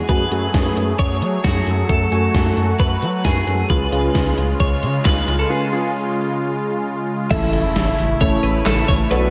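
Synth-pop in F# minor at 133 BPM, nocturnal and melancholic, this short cut from a longer piece sets a twangy twelve-string electric guitar melody with subtle chorus and analog delay over a brassy, nasal analog pad holding sustained chords and mellow, detuned analog keys with chorus. A smooth gliding synth bass with portamento and vibrato anchors the low end, while an up-front gated 80s drum machine drives it with a thumpy kick, overdriven gated-reverb snare, handclaps, hi-hat and crash cymbal. The whole dreamy mix sits in a lush hall reverb, and after a break from 5.5 seconds the harmony moves to A at 7.3 seconds, marked by a very quiet electronic impact.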